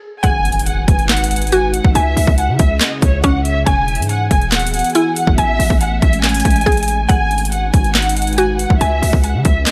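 A dry, close studio sound frames this eerie, menacing trap cut from a longer piece, set at 140 BPM in a half-time 4/4 feel in G# phrygian. A woody, mallet-like FM synth pluck with chorus and digital delay opens alone with arpeggios at 0.0 seconds. At 0.2 seconds it is joined by a dark, lush studio violin section with vibrato and portamento carrying a second line, a hard-hitting sine 808-style bass with a noise layer, and an overdriven trap kit up front with a hard-clipped kick, sharp snare, metallic hi-hats and handclaps. A very quiet electronic impact follows at 0.3 seconds. From 0.6 seconds a glassy, ethereal FM pad with ensemble chorus, phaser and its own reverb holds sustained chords softly beneath, as the harmony moves through G#m7, C#m, Eadd9 and Amaj7.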